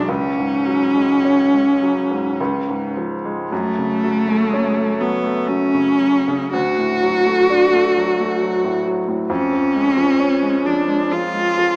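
In a slow, rubato 3/4 drifting between 50 and 68 BPM, this melancholic, solemn romantic classical duo in F# minor sets a rich, focused bowed cello melody with vibrato and a smooth top, placed up front, over an intimate grand piano accompaniment whose audible action noise sits close at hand. Both instruments play throughout this 11.8-second passage cut from a longer piece, with the harmony moving from C#sus4 and C# onto F#m at 3.5 seconds, then through D to C#/E#. A moderate concert hall reverb surrounds the pair, while the overall sound carries a small-speaker character.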